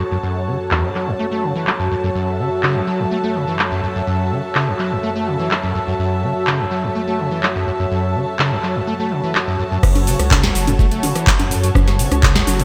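An overdriven, squelchy sawtooth acid bass riff leads this gritty acid house excerpt at 125 BPM in F# minor, set over a lush detuned unison pad and dark, bowed chamber strings on F#m, with a booming analog drum machine of crisp snare, metallic hats, congas, claps and shaker entering at 0.7 s before a drop at 9.8 s brings in a deep overdriven kick and a round, pumping sub bass, all wrapped in plate reverb and bright 1980s-style digital sheen.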